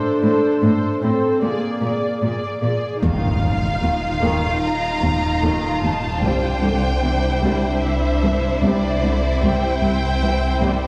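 Cinematic hybrid orchestral and electronic film score, vast and tense, in which a mellow duduk with scooped notes and tape echo sings briefly over rich, smooth viola and cello sections, until at 3.0 seconds an expressive violin melody with a soft attack, a focused second violin line, a thick, menacing detuned saw bass and an electronic impact in the background arrive, the ensemble heard from further back in a wet, reverberant scoring stage, though the violas and saw bass sit up front.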